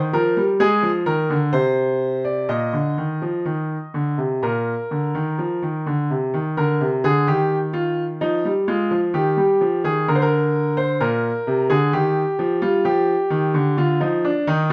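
Solemn yet driving, this short cut from a longer classical piece is a baroque-style two-part invention for solo grand piano in Eb major, moving at a measured 64 BPM in a straight 4/4. The concert grand sounds brilliant, open and up front, with a deep bass and long sustain that lets each note ring into light reverb. Its range runs from Bb2 up to Eb5, and the instrument is tuned slightly below standard pitch at A4 = 439 Hz. The opening section settles the harmony on Eb, Ab and Bb. At 6.3 seconds a second section begins, passing through Eb, Fm7, Bb/D and back to Eb. The passage closes at 14.7 seconds after arriving on a rootless Cmadd11 at 13.8 seconds.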